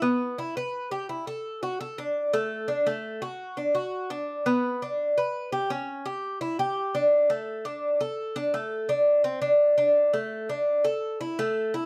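Lightly reverberant, this short Latin cut from a longer piece centres on a solo Cuban tres placed up front, its picked double strings ringing metallic, with some octave-doubled courses among them. The mood is relaxed and warm at a straight 169 BPM in 4/4, the tres moving between A3 and B4 as a brief opening idea gives way to a new passage at 2.9 s that carries through to 11.9 s.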